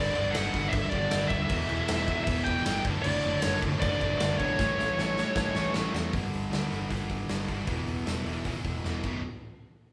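Driving and heavy, this short hard rock excerpt cut from a longer piece moves in a straight 4/4 over a progression that runs G5, Em, D/F# and A before shifting to G5, E5 and B5. Up front, a dark, high-gain lead guitar carries the melody until 5.7 seconds, while a bright, scooped, double-tracked electric guitar sits very quietly beneath it with a compressed riff that stops at 6.1 seconds. Two more rhythm guitars hold the riff to the end in the background: one bright and high-gain, the other an overdriven semi-hollow with a hollow-body warmth. A round, amped fingered bass adds dark low end throughout. The big acoustic drum kit stands up front with a tight kick, medium-tuned snare, hi-hat and crash, firing fills at 4.6 and 8.9 seconds, and the whole band sounds like it is playing live in one stone room with a moderate studio reverb.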